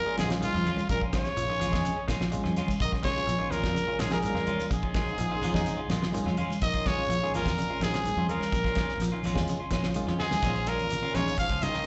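A raspy, growling trumpet leads this defiant, driving afrobeat excerpt up front with light vibrato and slapback echo, while a cup-muted trombone section plays a veiled second line in the background. A barky, lightly overdriven tine electric piano accompanies and adds fills at 5.9 and 9.5 seconds, as two clean picked electric guitars sit behind it, one bright with lush chorus playing stabs and the other warmer playing arpeggios. A round, dark fingered bass, a dry 70s drum kit with a fat snare and a fill at 10.2 seconds, thick-skinned congas and a grainy, distant shekere drive the groove, all heard as a live gig through the venue's PA with club reverb and a dulled top end.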